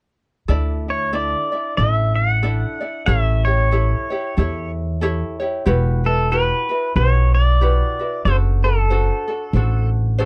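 A languid, relaxed Hawaiian excerpt in D major at 93 BPM with a lilting swing feel opens at 0.5 seconds with light, fingerpicked acoustic ukulele and a woody, thumpy pizzicato upright bass carrying tube saturation, before a twangy, clean electric pedal steel guitar enters at 0.9 seconds, played with fingerpicks, slide and volume swells to carry an up-front melody over chords moving from Dsus2 through A7 and Emadd9 to D7/F#, all captured in a dry, close 1970s-style studio sound.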